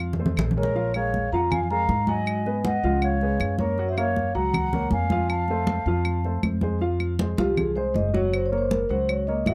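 Driving and sultry, this 158 BPM Afro-Cuban jazz excerpt pairs a dark baby grand piano, a growly pizzicato upright bass up front, woody claves and bright, thin-skinned congas beneath a mellow, ringing soft-mallet vibraphone melody that enters at 0.6 seconds, shadowed by an airy, distant silver concert flute until 6.4 seconds, before the vibraphone takes a solo at 6.8 seconds, all captured in a dry, close 1970s-style studio sound with light reverb.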